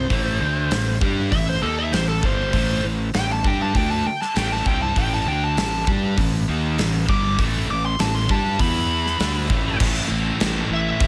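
A smooth, overdriven lead guitar solos from the start of this aggressive, heavy hard rock excerpt in A minor at 99 BPM, riding over a sludgy double-tracked rhythm guitar in the background, a scooped high-gain guitar riff, a round, punchy fuzz bass up front and a polished gated 80s drum kit with bright cymbals and a tight kick, all in light reverb, until the solo gives way at 9.8 seconds as the chords move from E5 to A5 and back to Am.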